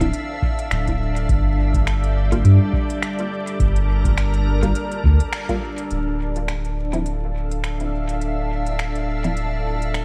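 This ambient dub excerpt opens at once on a soft, organ-like pad, a muted chord stab, a round sub bass, an electronic kick and a light kit of finger snaps and hi-hat, all over a bed of vinyl crackle. The mood is spacious and deep, moving at 104 BPM in 4/4 with a gentle swing on the sixteenths, in D minor. The pure, slightly detuned pad holds sustained chords through ensemble chorus and reverb, moving from Dm9 to Gm7. Meanwhile the wave-folded stab carries phaser and dub echo, and the up-front sub bass anchors the low end. The tape-warm kick sits in the background with studio ambience, while the smooth hats and snaps trail dub echo. A band accent lands at 5.3 seconds, the kick drops out at 5.6 seconds, and from 5.9 seconds a second section settles on Dmadd9, with the stab falling away shortly before the cut.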